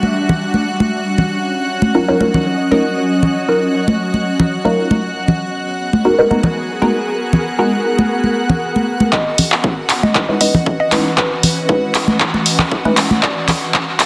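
A muted, nasal dub chord stab leads this late-night, hypnotic deep house cut at 117 BPM in C# dorian, its detuned sawtooth tone pumping against the beat through phaser and delay while a filter sweep moves across it, with bright, dry congas, an ethereal, warbling pad and a clear, lightly vibrato violin section drifting beneath through chords such as Em9, D#m9 and G#m9. At 9.1 seconds the piece begins to build over a C#m9 chord as a woody, round FM synth pluck carries the melody under its own filter sweep, and an overdriven, up-front drum kit of handclaps and hi-hat arrives with a fill alongside a punchy, tape-tinged electronic kick. A lush hall reverb and a dense, heavily limited master give the mix its polished, enveloping sheen.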